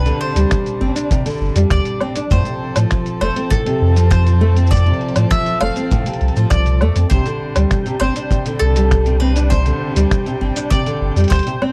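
A picked mandolin melody with tape echo opens this pastoral folktronica piece at 100 BPM, over fingerpicked nylon-string guitar arpeggios with audible finger squeak, a bowed string quartet holding rich chords with vibrato and portamento, and a round, deep sine sub bass sitting up front, all moving between Csus2 and F. A muffled, pitched-down lo-fi sampler kit of cabasa, finger snaps, hi-hat and woodblock joins almost at once, with a boomy, gritty, saturated kick arriving at 0.5 seconds. At 7.4 seconds a flickering, grainy granular texture with its own reverb drifts in, sitting in the background, while the rest of the recording stays fairly dry.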